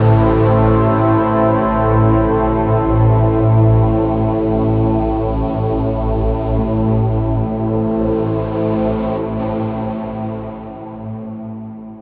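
An ominous, unsettling dark ambient drone opens with three parts at once: a swarming, detuned low drone sitting up front, a deep, moody pad of sustained chords, and a bronze singing bowl playing soft, ringing arpeggios in the background. The drone is bright and granular and the pad mellow with chorus, while the metallic, close-miked bowl carries slow beating and a diffuse ambient delay, all inside a wet cathedral reverb and worn, warbling cassette tape with drifting pitch. The bowl and drone stop at 10.0 seconds, leaving the pad alone until 10.5 seconds in this fragment of a longer piece.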